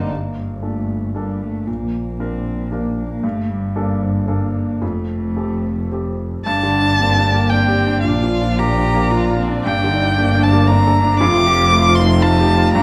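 A woody, intimate upright piano with audible action noise and an expressive bowed double bass with vibrato and portamento open this melancholic, reflective neoclassical piece in G minor together, sounding briefly with violin and string section before a close, smooth cello second line enters at 0.1 seconds. At 6.5 seconds a rich solo violin returns to take the melody over sustained chords from a string section set in the background, all in a rubato 3/4 at 114 BPM within a moderate recital hall reverb.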